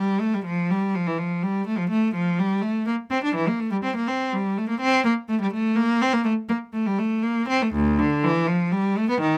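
Classical, in the manner of a baroque-style suite movement, this brief passage features a single cello played alone with a solemn, grave character, moving in 12/8 at 83 beats per minute with flexible rubato timing. The bowed cello sounds clear and focused, with vibrato, ranging from D2 up to D4 and sitting up front in the mix. Captured by close, detailed microphones in a dry acoustic, the recording lasts 9.4 seconds and is cut from a longer piece.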